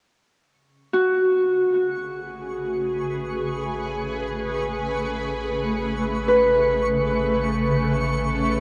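A fingerpicked Celtic harp opens this luminous ambient excerpt at 0.9 seconds, its ringing arpeggios sitting up front and trailing into a diffuse ambient delay. In free time and A major, a twinkling granular texture high above fades in at 1.7 seconds, sparkling with an octave-up shimmer and a bright FM edge. By 2.4 seconds a detuned, ethereal pad enters with slow-attack sustained chords on Amaj9, its sine tone thickened by chorus and phaser. Beneath it, a deep, ominous drone on A1 fades in as the bass, dark and wave-folded with transformer saturation. The whole mix floats in an enormous reverb tail and carries the worn, warbling pitch drift of old cassette tape, giving the piece a hazy, vintage glow.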